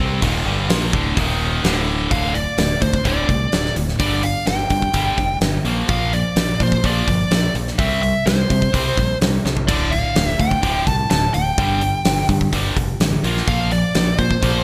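A menacing, aggressive hard rock excerpt in D minor, driving at 127 BPM in a straight 4/4. A double-tracked, overdriven electric guitar plays a bright, picked riff up front, joined by a growling fingered electric bass with its own overdrive and an amped bite, while a huge arena drum kit with a fat snare, punchy kick, crashes, hi-hat and toms booms through gated reverb in a big room. At 2.1 seconds a bluesy lead guitar enters high above, its warm, distorted tone carrying a melody through delay. The harmony moves from D minor through power chords on E-flat, D and G, then a B-flat chord and a C power chord, and a drum fill at 9.4 seconds sets up the return to D minor. The sound is bright 1980s-style digital production with a moderate plate reverb.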